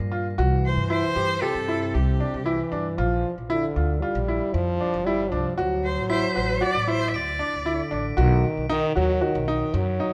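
Contemporary chamber music in 5/4 at 115 BPM, hypnotic and pensive, this short cut from a longer piece sets a bright baby grand piano's arpeggios, with audible action noise and long sustain, over a woody pizzicato upright bass and a smooth-topped French horn playing a second line. A clear, focused cello carries the bowed melody with vibrato from 0.7 to 7.9 seconds, while shimmering, bell-like crotales ring in the background from 6.1 seconds. The chords move from C to Bb, D and B within a moderate concert hall reverb.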